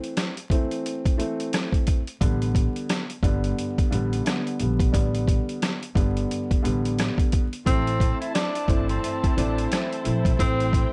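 Reflective and moody, this short excerpt from a longer boom-bap hip-hop piece moves at 88 BPM in A minor with a swung sixteenth-note feel. It opens on a break in which a dark, boxy upright piano, treated with cassette-tape grit and plate reverb, sits up front alongside a compressed, pitched-down sampler-style drum kit with a thumpy kick, medium-tuned snare, rim click and hi-hat. A woody pizzicato upright bass joins at 2.2 seconds as the harmony shifts from Am to G. At 7.7 seconds, back on Am, a breathy, close-miked tenor saxophone takes a soft-attack jazz solo with scooped notes, while a lush, distant string section adds bowed, vibrato-rich sustained chords beneath it. Vinyl crackle and light reverb lend the whole mix a dusty, late-night atmosphere.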